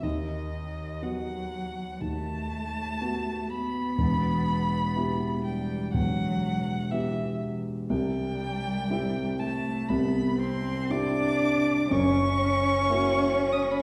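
Elegiac and melancholic, this slow romantic movement for piano trio unfolds with rubato freedom, cut from a longer piece. A muted violin carries the veiled melody with vibrato while a close, con sordino cello sings a dark second line beneath it, both bowed by single players, over the mellow, deep-bassed accompaniment of an up-front concert grand. The chords move from B7/D# through Em and C to F#7, and a wet recital hall reverb places the listener further back in the room.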